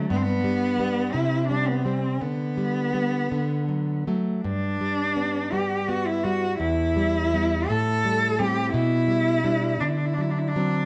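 A recital hall's moderate reverb gives this short, warm recording a gentle bloom of space around two players placed up front. It is a lyrical, romantic duo in a lilting 6/8, with beats that stretch and relax in an unhurried rubato. A single bowed cello carries the melody across its middle register, singing with expressive vibrato and sliding portamento between notes. Beneath it, a classical nylon-string guitar supplies fingerpicked accompaniment that reaches down into its low bass. The harmony moves from G through a colourful C5 and a D chord, then turns tender through Em and Am7 before arriving at a D7 near 9.8 seconds, where this fragment of a longer piece is cut off.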